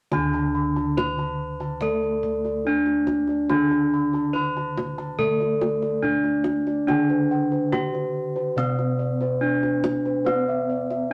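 Shimmering and serene, this Javanese gamelan excerpt in D slendro moves at a calm 71 BPM, with a bright, up-front bronze metallophone struck with a horn mallet carrying the melody over a darker, smooth metallophone whose paired tuning produces beating tones, mellow padded bossed gongs playing arpeggios above, full, dry, close-miked bossed gongs anchoring the bass, and tight, close kendang percussion, all in a club reverb with a touch of tube saturation.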